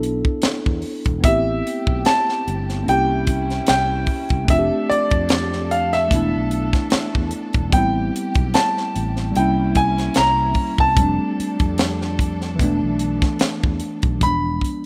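A slow, late-night neo-soul groove at 74 BPM opens on a worn, slightly out-of-tune tine electric piano, a growly fretless bass and a tight funk kit with a high-tuned snare sitting up front, all with a gentle 16th-note swing in a small, lightly reverberant room. At 1.2 seconds a clear, intimate baby grand enters with a high melody carrying slapback echo and audible action noise, while a lush, softly placed string section adds bowed, vibrato-laden sustained chords. The introspective progression cycles through E7sus4, Am9, C7b9 and F69 before landing on E7b9 at 14.2 seconds, with a rough home-demo character to the mix.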